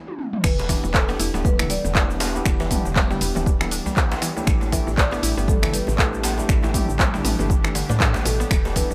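Afro house with an earthy, spiritual mood, this excerpt opens on clean tine electric piano stabs through a combo amp and a brief drum fill from a dark-hatted, low-pass-filtered deep house kit with snaps, claps, shaker, toms and crash. It drops at 0.4 seconds into a punchy layered electronic kick, a round woody FM bass with tube saturation, a background marimba melody with digital delay, ring-modulated synth-pluck arpeggios and a very quiet detuned analog pad, with a distant djembe with metal rattles joining moments later. The piano, bass and pluck pump under sidechain as the harmony moves from Em7 to A7sus4 in a bright 1980s-style digital production.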